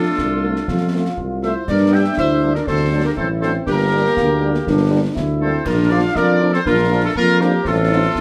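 This is a military-style march for wind band in a straight 2/4 at 120 BPM, with a rousing, proud character, cut from a longer piece. A trumpet section carries the melody with a dark, distant, roomy tone. A clear, close-miked woodwind section with light vibrato and a warm, roomy solo euphonium supply second lines. French horns sit in the background with accompaniment, and a mellow trombone section holds soft-attack sustained chords. A mellow tuba stands up front on the bass, and concert snare, bass drum and clash cymbals with dark cymbals enter at 0.2 s under light reverb. The harmony moves from F through Gm, D and Bb before settling on F7/A near 7.7 s.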